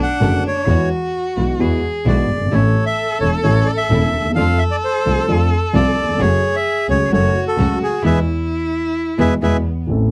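A dry, close 1970s-style studio sound with light reverb frames this sultry, passionate tango fragment at 131 BPM in a rubato 4/4, where a reedy, bright, up-front bandoneon carries the melody over an expressive bowed cello second line with portamento, a dark, woody, slightly detuned upright piano accompaniment, very quiet sul tasto string-section stabs and a smooth bowed double bass, before a band accent at 8.0 seconds.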